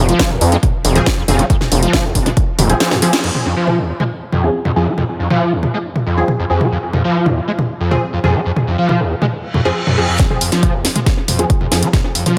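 Hypnotic and dark, this driving peak-time techno cut is built on a squelchy, screaming distorted acid line, soaked in chorus, tape grit and delay, that runs throughout and opens under a filter sweep, while a nasal, saturated synth bass drops out after 2.7 seconds and a punchy, tape-warm electronic kick falls away before returning at 10.2 seconds. A layered drum kit with a cracking snare, hi-hats, toms and crash pumps in an echo-heavy plate-reverb space, and a thick, detuned rave stab with a moving notch enters at 1.0 seconds and sweeps through its own filter from 3.2 seconds on. A drum fill and band accent push into the middle stretch, and an electronic reverse cymbal rises into a closing build-up.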